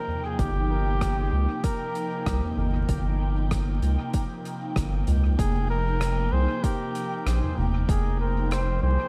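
Ambient dub with a hazy, spacious mood, cut from a longer piece, where a bucket-muted trumpet carries a mellow, veiled melody with light vibrato through dub echo over an airy, breathy pad shimmering with chorus and phaser. A round analog bass sits up front, dark and deep, while a soft-mallet drum kit of hi-hat, rim click and toms, also sent through dub echo, plays alongside an overdriven electronic kick drum. The harmony moves from Gm7 to Fsus2 at 5.4 seconds, all set in light studio reverb with a haze of vinyl crackle.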